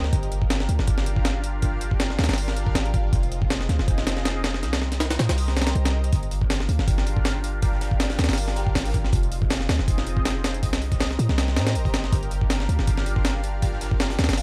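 Dry and dusted with vinyl crackle, this nostalgic, raw drum and bass and jungle excerpt at 160 BPM in G phrygian sets a gritty, compressed sampler-style breakbeat with a thumpy kick and high-tuned snare up front beside a deep, boomy 808-style sine bass, under a thick, detuned unison pad with chorus, phaser and 12-bit sampler grit sustaining Gm7, Fm7 and Cm7 chords, while a very quiet, dark, saturated second breakbeat kit with a rolled-off top joins at 6.1 seconds.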